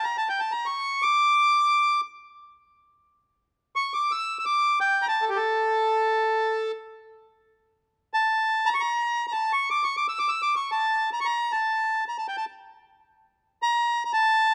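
A reedy, mid-forward accordion plays alone and up front through this short passage cut from a longer Arabic maqam ensemble piece. Its line moves between G4 and E6, carrying a longing, soulful mood. The music unfolds in two matching sections, with the opening material returning at 7.5 seconds and running to 14.5 seconds. A light reverb gives the instrument a touch of space while keeping it close and present.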